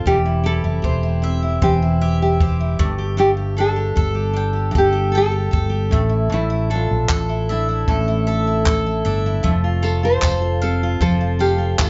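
A fingerpicked nylon-string guitar carries the melody in this wistful, reflective acoustic pop excerpt, its deep classical tone marked by an audible finger squeak. Beneath it, an up-front dreadnought steel-string guitar supplies full-bodied picked accompaniment, while a bowl-back mandolin adds bright arpeggios from its doubled strings. A mellow fretless electric bass sits prominently in the low end with a dark, round, punchy, amped sound. A compact cocktail drum kit keeps a straight 4/4 pulse with handclaps and a punchy kick, its sound dry and natural. The chords move from C/E through Gsus2 and Asus4 to F, and at 9.8 seconds a vintage, jingly tambourine joins in the background, all set in light reverb with a soft, rounded top end.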